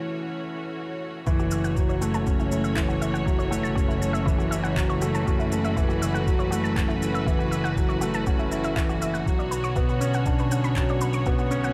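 Piano and strings electronica at 120 BPM in a straight 4/4, melancholic and moving, this piece opens with a felt-muted upright piano riff, soft, mellow and up front with delay, over sustained chords from a rich, smooth studio string section that carries sidechain pumping, all resting on F#m7. At 1.3 seconds the drop arrives: a muffled, thumpy, pitched-down electronic kick with small room reverb, overdriven, layered shaker and handclaps, an earthy bowed chamber double bass section, and a round, nasal analog pluck playing arpeggios in the background with chorus and delay. The harmony moves to Bmadd9 at 9.3 seconds in this fragment cut from a longer piece, set in light reverb and studio ambience.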